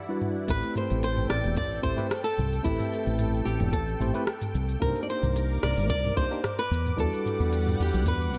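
Relaxed and smooth, this short cut from a longer sunset chillout piece moves at 111 BPM in a straight 4/4, set in A dorian. A bright, fingerpicked flamenco guitar carries the melody up front, its fresh strings trailed by tape echo, while a clean tine electric piano, heard as if through its built-in speakers, supplies accompaniment from 0.1 seconds. Underneath sits a lush, thick unison pad of detuned sawtooth and square waves with a sub octave, slow attack and long release, colored by chorus, phaser and vintage 12-bit sampler grit. A smooth R&B drum kit of cabasa, hi-hat, rim click and toms brings tape-warm, smooth hats, joined at 0.5 seconds by a deep analog electronic kick in the background and a dark, round, punchy fingered electric bass placed up front. The harmony moves from Am9 to Cm9 at 4.8 seconds and then Em9, all framed by light reverb and digital ambience.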